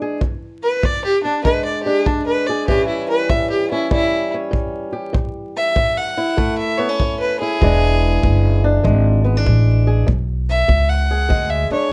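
A swung 4/4 groove at 97 BPM drives this swaggering, gritty acoustic country blues in E mixolydian, cut from a longer piece, with a boxy, fingerpicked swing guitar and a distant, roomy kick drum played with brushes carrying the pulse over E7 and A7 changes. Up front, a biting, nasal fiddle with an airy bow takes the melody as a solo throughout, while a woody, thumpy pizzicato upright bass on gut strings joins at 7.6 seconds. Light reverb, a dark, warm production and vinyl crackle give the recording its grain.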